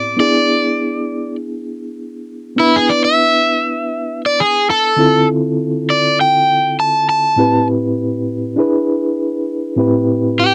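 A dry, close 1970s-style studio sound frames this smoky, soulful blues fragment at 100 BPM in 4/4 with a light sixteenth-note swing and tuning at A4 = 438 Hz, where a bright, overdriven semi-hollow guitar carries the melody up front while a reedy electric piano with fast tremolo, heard through its built-in speakers, supplies the accompaniment as the harmony moves from E7 through Dm7 and Am7, returns to E7, and then settles on Am7 at 9.8 seconds.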